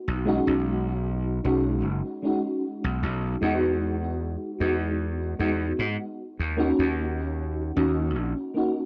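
Nostalgic and dreamy, this brief vaporwave excerpt drifts at 76 BPM in B major with a light swing. A mellow, round FM electric piano with a warbling chorus and tape echo carries the chords B69, Emaj9 and D#m7 from the start. A gritty, growly slap bass with overdrive sits punchy and up front beneath it. A moderate plate reverb and a cassette-tape sheen give the whole clip a hazy, vintage glow.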